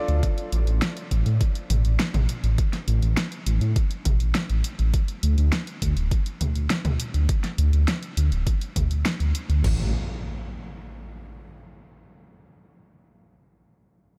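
A dark detuned saw bass and a pop drum kit open this synthwave excerpt together at 102 BPM in a straight 4/4, the bass's deep, rumbling sawtooth unison beating and saturated as it sits up front, spanning D1 to A2, while the kit's fat snare, warm hi-hats, crash cymbal and toms carry their own overdriven grit. Almost at once an overdriven electronic kick drum joins with a knocking, layered punch, placed prominently in the mix; both drum parts were re-recorded in a small room. The mood is nostalgic and moody, held in light reverb and a digital ambience. At 9.6 seconds an electronic impact rings out, lasting to 12.0 seconds as the fragment closes, while the drums stop near 9.8 seconds and the bass fades at 9.9 seconds.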